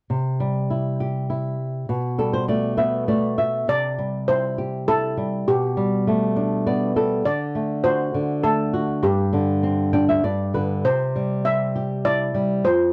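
This sleepy, gentle children's lullaby in C major sways in 3/4 at 101 BPM, opening with a thumb-plucked flamenco guitar, up front, dark and boxy with audible finger squeak, that adds short fills between its chords. At 3.7 seconds a shimmering, metallic steel pan played with medium rubber sticks takes the melody in a boxy small-room sound, while the harmony moves from C through Gadd9/B, D7 and Gsus4 to rest on Cadd9. Moderate studio reverb and a dark, warm production frame this brief cut from a longer piece, which runs to 12.9 seconds.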